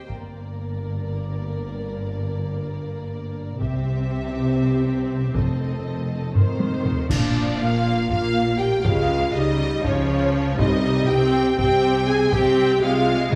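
Cinematic, epic orchestral film score in G minor, moving at 240 BPM in eighths with a straight 7/8 metre, cut from a longer piece with a relentless, dark mood. A distant studio violin section carries the melody high in its range with vibrato, while a second symphonic violin line sits in the background with a smooth top. A close, rich viola section provides the accompaniment as mellow French horns hold sustained chords, and a woody cello section and lush, expressive double basses anchor the bass. A close taiko ensemble struck with hard sticks pounds throughout, and a cymbal swell with bright clash cymbals and concert bass drum enters in the background from 3.6 to 8.1 s. A drum fill leads into a full accent at 7.1 s, where the harmony shifts toward Bb and Db, and a very quiet, dry timpani with hard mallets sounds briefly at 10.6 s, all set in a wet scoring-stage reverb.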